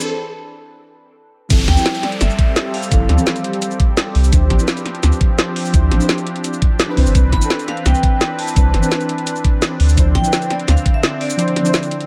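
A deep, round sine sub bass sits up front in this melancholic, soulful liquid drum and bass excerpt at 170 BPM in D dorian, arriving with a tape-warm knocking kick at 1.5 seconds as the build-up and filter sweep give way to the drop, while a riser and downlifter run until 4.3 seconds. Woody snare, metallic hats, shaker and crash from a layered drum kit run throughout, beneath a dark, detuned chord stab colored by chorus, phaser and dub echo, and a smooth sawtooth pad pulsing with tremolo and sidechain pumping through chords such as G13sus4, Dm9 and Cmaj9. A ringing vibraphone with medium hard mallets and motor vibrato floats its delayed melody high above, in a dry, close sound.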